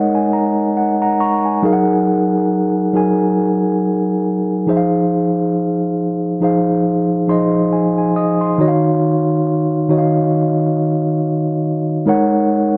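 A dry, close recording with a 1970s studio feel and a short booth ambience puts a mellow, clean tine electric piano up front, its tone coming through its built-in speakers. This soulful, late-night R&B fragment in Eb dorian moves at a slow 69 BPM with a swung sixteenth-note feel, the electric piano playing unaccompanied from Eb3 to Eb6 across chords such as Ab9sus4, Gb69, Fm7 and Ebm9. Short fills open the passage and return at 6.8 seconds before it resolves back toward Ab9sus4, a brief cut from a longer piece.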